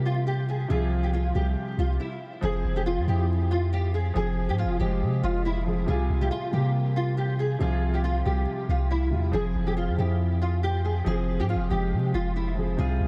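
A deep, sine-like 808-style bass with a fast attack and long decaying notes sits up front in this menacing drill excerpt, moving at 139 BPM in a half-time feel in F harmonic minor. A dark, mellow concert grand piano with a vintage, short-sustained tone and lush chorus carries the accompaniment, while a small, fingerpicked nylon-string guitar treated with ensemble chorus and tape echo traces a narrow melody above. After a brief stop from 2.0 to 2.4 seconds, the ominous piece shifts between Fm and Csus4 in a small room with light reverb and vinyl crackle.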